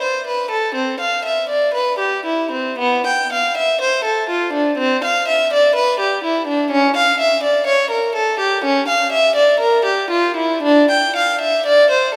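A solo violin with a rich, reedy gut-string tone carries this brief baroque-style suite movement on its own, played in period style by a single bowed player placed close and up front from 0.0 to 12.1 seconds. The mood is introspective and grave, and the metre in four is shaped with a flexible rubato feel. A long church reverb lingers around the instrument, giving this fragment of a longer piece a spacious, contemplative sound.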